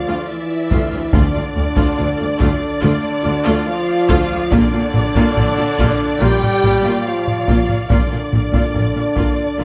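Opening on an expressive, softly attacked violin melody over a darker, distant second violin line and sustained chords from clear French horns and bright trombones, this epic, dramatic orchestral film-score fragment deepens as lush violas and cellos join at 0.1 seconds, then rich double basses and hard-stick taiko drums enter at 0.7 seconds, with the ensemble set in a moderate scoring-stage reverb.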